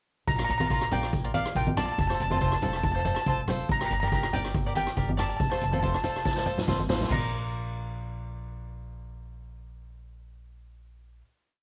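A festive, carefree calypso in Bb major at 141 BPM opens at 0.3 s with a bright, shimmering lead steel pan playing a motif-based melody in period phrases, over a woody, thumpy pizzicato upright bass carrying a syncopated figure and a boomy, mid-forward street-band drum kit with dark cymbals in a calypso groove. A crisp, picked cavaquinho adds rhythmic triad chords while low-tuned, ringing congas play a loose pattern, and the pan, cavaquinho and drums carry a cassette-tape character within a lightly reverberant home recording. After a drum fill, the drums and congas drop out around 7.2 s, leaving pan, bass and cavaquinho to hold the final Bb chord until 11.2 s.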